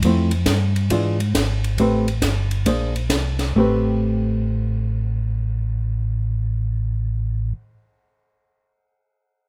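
A mellow, round tonewheel organ carries the bass line up front, its tone shimmering with chorus vibrato and a slow rotary speaker, while a dark, clean hollow-body electric guitar comps beside it with a compressed, fingered touch in this soulful, smoky soul jazz organ trio excerpt at 136 BPM with a swung feel in A minor. An acoustic jazz drum kit, with a high-tuned snare, boomy kick, hi-hat and ride cymbal, plays only until 3.5 seconds before dropping out, leaving organ and guitar to carry on under light reverb through chords such as Fmaj7, E7b9, Am9 and Bb9.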